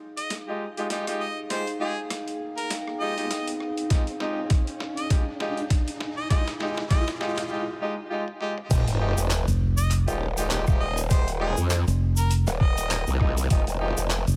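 Glitch hop with a swaggering, playful feel, this cut opens on a warbling, nostalgic tape-like pad and a warm harmonica melody with light vibrato and delay, over gritty, pitched-down boom bap sampler drums with a high-tuned snare and clear, tight horn stabs roughened by vintage 12-bit sampler crunch, while an electronic riser builds and an overdriven, thumpy kick arrives at 3.9 seconds. At 8.7 seconds a sub drop lands and the drop brings in an aggressive, wobbling growl bass and a grainy tube shaker in the background, followed at 9.5 seconds by a round, punchy fingered electric bass.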